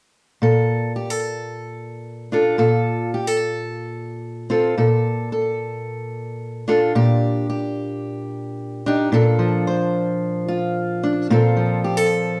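A fingerpicked steel-string acoustic guitar plays alone from 0.4 to 12.4 seconds, sitting up front with a warm, concert-quality tone and a touch of slapback echo. The music is peaceful acoustic folk in a straight four-beat feel, suited to a duo or small band though only the guitar is heard here. The harmony moves gently through major-seventh chords and slash chords that keep returning to the same bass note, giving a floating, open color. A new section begins at 9.1 seconds, circling back to the opening chord colors. Light reverb gives the short excerpt a soft sense of space.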